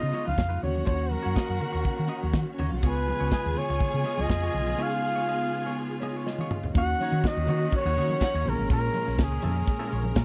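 Danceable and glamorous, this cut from a longer disco piece moves at 123 BPM in Eb minor. A breathy, vintage flugelhorn carries the jazz-style melody up front with vibrato and scooped notes, over a violin section that adds a lush second line with tape echo until 8.4 seconds. Twangy clean electric guitar, a mellow tine electric piano and a clear string section holding sustained chords sit in the background. A dark, round hollow-body bass and a punchy, up-front drum kit drive the groove, with very quiet, distant congas underneath. A break from 4.8 seconds brings an electric piano fill and a drum fill before the next section lands on Ebm7 at 6.7 seconds, all captured in a dry, close 1970s-style studio sound.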